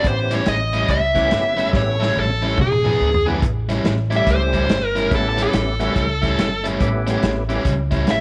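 A laid-back, swaggering electric blues shuffle at 142 BPM in A mixolydian opens with a dark, smooth lead guitar carrying the melody with overdrive and slapback echo, over a picked riff on a second electric guitar, woody pizzicato upright bass and a vintage drum kit with a punchy kick and rolled-off top. A fat, percussive tonewheel organ with key click, chorus vibrato and rotary speaker fills out the accompaniment until 7.6 seconds, while the drums play a fill from 1.7 seconds and the chords move from A7 to E7 and back. At 3.4 seconds the up-front lead guitar takes a solo, the band set in a small room with light reverb in this cut from a longer piece.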